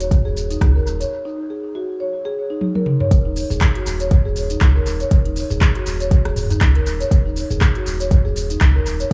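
Woody, mellow marimba arpeggios played with soft mallets run through this driving afro house excerpt in Eb minor at 120 BPM with a swung 16th feel, carrying dub echo and sidechain pumping over a round, nasal analog bass that also pumps, an echoing afro-pop kit of crisp hats, handclaps, rim clicks, shaker and toms, and a deep electronic kick, moving through a break from 1.1 s and a drum fill at 2.6 s into a drop at 3.1 s in a dry, echo-heavy small-room mix.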